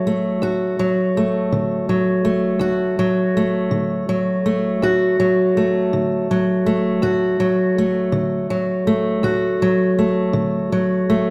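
In a straight 12/8 lilt at 54 BPM, this swaggering, rollicking blues fragment in D major features a lone fingerpicked steel-string acoustic guitar, woody and up front with the seasoned tone of old strings, ranging from D2 to F#4 across its 11.3 seconds on a D chord, and ringing in the moderate reverb of a church or concert hall.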